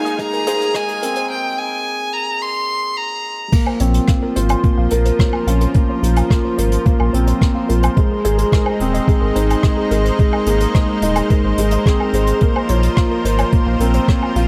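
Over a straight 4/4 pulse from a muffled, thumpy electronic kick and an airy brushed jazz kit with dark cymbals, this cinematic, melancholic piano-and-strings electronica fragment opens with a smooth, up-front solo violin melody with vibrato above a lush, detuned pad, a warbling lo-fi pluck arpeggio in the background and a soft felt-muted upright piano riff with audible action noise, until the violin stops as the drop arrives at 3.5 seconds and a deep, round sub bass enters at 3.8 seconds, with sidechain pumping on the pad, pluck and bass inside a light small-room reverb.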